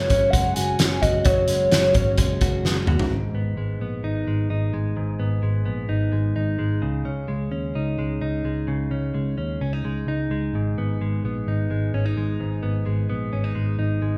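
A straight, steady pulse in four drives this wistful, bittersweet fragment of jangly indie pop, set in a live-sounding room with a moderate studio reverb. A loose acoustic drum kit sits up front with a punchy kick, a fat snare, hi-hat and toms, its pumping room sound rounded off by a drum fill that ends at 3.1 seconds. Over the opening bars a hollow, woody synth lead carries the melody with a soft, full-bodied tone, vibrato, chorus and phaser, and it falls silent at 2.6 seconds. A clean, direct-recorded electric guitar plays compressed picked arpeggios up front, while a dark, foam-muted vintage bass adds a round, amped low end. Once the drums stop, guitar and bass continue together through a gently shifting progression that settles back on G# minor until 14.2 seconds.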